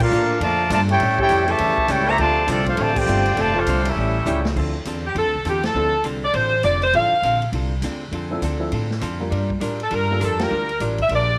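Swinging at 202 BPM in 4/4, this brassy, sultry big band jazz excerpt in D minor opens with a soft-attack trumpet section carrying the melody over a bright trombone section with slapback echo, close-miked saxophones holding very quiet sustained chords, a clean, picked hollow-body archtop guitar, a woody pizzicato upright bass up front and a punchy drum kit, which adds a fill at 4.3 seconds. The horns drop out, and at 4.6 seconds a dark, intimate baby grand piano enters in the background, then an edgy saxophone section with vibrato takes over the melody from 5.1 seconds, with band accents punctuating the line. Light reverb and studio ambience frame the sound.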